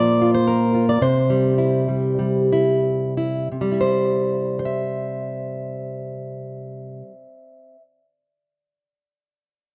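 A full-bodied, jumbo-sized steel-string acoustic guitar opens this short folk fragment, fingerpicked and plugged in, sitting up front as it moves from a Bb5 chord to C while the pace slows through the first 3.5 seconds. The mood is nostalgic and warm, in C mixolydian and straight 4/4, with the tempo ranging between 84 and 114 BPM. Recorded outdoors with light reverb, the solo guitar covers a range from Bb2 to E5 before falling silent at 7.8 seconds.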